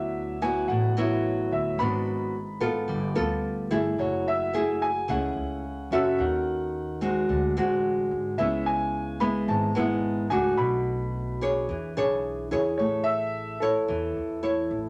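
Relaxed and sophisticated, this bossa nova passage is cut from a longer piece and moves at 109 BPM in a straight 4/4. A grand piano with a natural tone carries the melody throughout, sitting between A4 and B5. Beneath it, a fingerpicked nylon-string guitar on old strings supplies the accompaniment, its small, woody sound placed up front and loudest in the mix. An acoustic upright bass, played pizzicato on steel strings, anchors the low end with a growly character, sitting quietest in the mix. The harmony drifts through rich jazz colors, opening on D69 and passing through chords such as G9 and D7#11 before arriving on Amaj7 at 12.8 seconds, all bathed in a moderate studio reverb.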